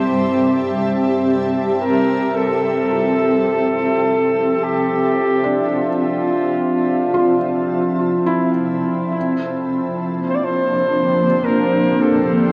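Awash in a vast cathedral reverb and the warble of worn cassette tape, this peaceful, luminous ambient fragment in triple time opens with a breathy, wind-like noise texture that is barely audible until 2.4 s. Up front, a soft, distant flugelhorn sings a classical-style solo melody through shimmer reverb and tape echo, floating over a cloudy, blurred granular pad that sustains the chords from Am7 to Fmaj7. A felt-muted upright piano adds intimate, mellow arpeggios with audible action noise, and from 4.4 s a calm, detuned organ-like drone with ensemble chorus settles in the background.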